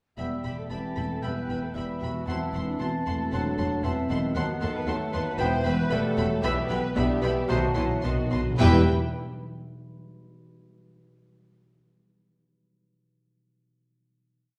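Stormy and dramatic, this fast romantic orchestral piece sets a lush, vibrato-rich violin melody over an independent woodwind web of clear oboe, hollow flutes, a distant clarinet and mellow bassoon, with brass chords and trumpet stabs, a bright trombone section, a ringing thumb-plucked harp, deep cello and double bass, a viola inner melody, and mellow horns doubling the tune, while timpani enter at 5.4 seconds with a fill at 7.5 seconds before a final chord sounds in a stone room heard from further back.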